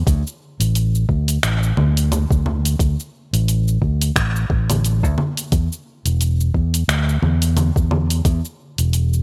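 Relaxed and warm, this brief sunset chillout excerpt moves at 88 BPM in 4/4 with a light swing on the sixteenths, as an up-front fingered electric bass, amped and tube-saturated, holds the low end beneath a soft, tape-colored electronic kick that drops out at 8.4 seconds and a smooth R&B kit of cabasa, congas, finger snaps and warm hi-hats, the whole mix sitting in light reverb and digital ambience with a bright 1980s-style digital sheen.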